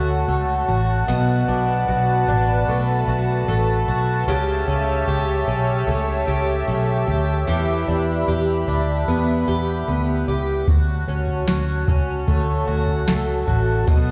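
Dream pop at 75 BPM in D major, this floating, ethereal passage is cut from a longer piece and moves through a soft progression of Dmaj7, Bm7, A7 and Em7 before landing back on Dmaj7. A fingerpicked twelve-string acoustic guitar sits up front with shimmering, octave-doubled arpeggios, its boxy tone dressed in lush chorus and digital delay, with finger squeak audible along the strings. Above it, a warbling, detuned sawtooth pad holds smooth sustained chords with a slow attack and a touch of chorus. A vintage muted fingered electric bass gives a dark, round, punchy low end, also placed up front. At 10.7 seconds a soft vintage rhythm box enters, dry and analog, with a deep kick, crisp snare and toms. The whole sound is bathed in a moderate two-second stage reverb and played back through a big system in a bare stone room, lending it an echoing air.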